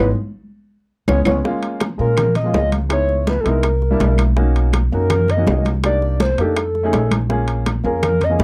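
A pure, round sine lead with chorus and vibrato carries the melody through this sunny, sophisticated Afro-Cuban jazz fragment, cut from a longer piece, over a dark, mellow baby grand piano with audible action noise and an up-front, woody pizzicato upright bass, opening on a band accent and drum fill before tight bongos, high-tuned congas, ringing metal-shell timbales and background claves join at 1.1 seconds, all captured in a dry, close 1970s-style studio sound as rich jazz chords move beneath.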